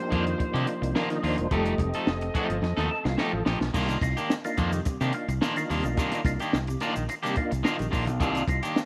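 Cool and hypnotic, this funk groove sits at a straight 108 BPM in 4/4 and C dorian, cut from a longer piece and moving from Cm11 to F9 and back to Cm11. A mellow, round tonewheel organ with percussive third-harmonic attack, chorus vibrato and a slow rotary speaker takes a solo through the opening 3.7 seconds, its stabs running to 8.6 s. A smooth-topped horn section with light vibrato plays a second line touched by tape echo until 3.4 s, while a twangy, picked electric guitar at the edge of break-up comps up front with a vibrato effect. A fingered electric bass sits direct and forward beneath a compact cocktail kit with a high-tuned snare, punchy kick, hi-hat and crash, which plays a fill from 2.6 s to 3.7 s. A grainy, distant egg shaker enters at 3.8 s in the background, and the whole band sits in light reverb and small room ambience.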